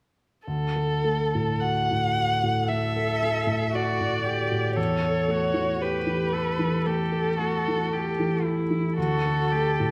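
Flexible rubato in 4/4 gives this slow, romantic piano trio movement a gently breathing pulse. The mood is tender and warm. From 0.5 s, a single bowed violin carries the melody up front, its rich tone shaped by vibrato, soft attacks and expressive portamento. Beside it, the grand piano plays the accompaniment with an intimate, natural sound, long sustain and audible action noise. At 2.7 s a solo cello enters more quietly with a clear, focused second line, bowed with vibrato and a smooth top. The harmony leaves its home chord for a dominant seventh near 4.8 s and settles back, all within a recital hall's lush reverb, in what is clearly a fragment cut from a longer piece.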